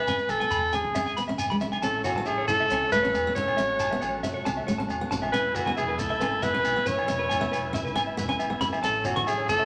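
A clear, forceful alto saxophone leads up front with scooped notes and vibrato over bright, twangy electric guitar arpeggios, picked acoustic guitar, ringing agogo bells, grainy shekere, distant congas, a woody pizzicato upright bass and a smooth tonewheel organ with key click that enters at 1.8 s, making this a joyful, danceable highlife guitar band excerpt at 137 BPM in A major, set in a wet, large studio reverb.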